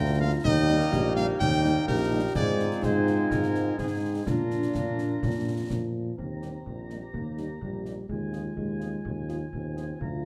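Moderate large-studio reverb gives this proud, spirited march for wind band a spacious sound, moving at 126 BPM in a straight military-style 2/4 in Eb major. A clear, close-miked cornet carries the melody over distant, roomy woodwinds with light vibrato and a smooth-topped euphonium on the second lines, while mellow French horns accompany in the background and vintage-toned trombones hold sustained chords until 5.9 s. An up-front tuba with vibrato anchors the bass, and concert snare drum, concert bass drum and dark clash cymbals from a small room supply the percussion.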